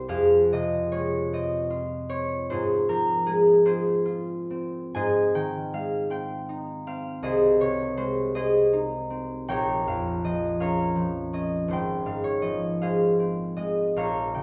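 Wistful and gentle, this classical piece for solo concert harp moves in a flexible, rubato 6/8. The harp sounds acoustic, warm and ringing, fingerpicked up front across a span from Ab1 to Ab5, while a wet recital-hall reverb lends the church-like space a lingering glow. Drawn from a longer work, the 14.4-second fragment drifts through a soft minor-key progression that settles back on its opening harmony.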